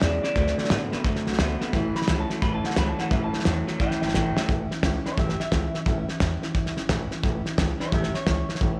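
Upbeat and retro, this short rockabilly fragment, cut from a longer piece, rolls along with a swung 4/4 feel and a tuning of A4 = 436 Hz. A twangy, lo-fi electric guitar through a small old amp carries the melody with tape echo, taking a solo over the first 4.5 seconds as the harmony moves from D7 to A7. A second small-amp electric guitar, bright and slightly broken-up, plays a low picked riff until 4.5 seconds, while a full-bodied jumbo acoustic guitar picks its accompaniment in the background. Underneath, a woody, thumpy pizzicato upright bass with gut strings sits beside a cloth-damped, thuddy drum kit whose fat snare, tight kick and hi-hat sound gritty and rolled-off up front, with a drum fill from 4.1 seconds leading into the second section. Light reverb and a small room ambience give the whole take an intimate, vintage character.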